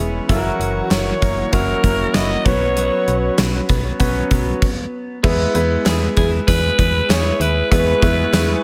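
Glossy and uplifting, this 1980s-style pop excerpt at 97 BPM in E major pairs a breathy, raspy alto saxophone lead with delay against a clear, intimate concert grand piano, a snappy FM bass with a metallic attack, a bold brassy analog pad with chorus and vibrato, a twangy twelve-string electric guitar riff, and an up-front gated drum kit with tambourine and barely audible group handclaps in a small, lightly reverberant room, with a brief stop from 4.6 to 5.2 seconds before moving into a new section.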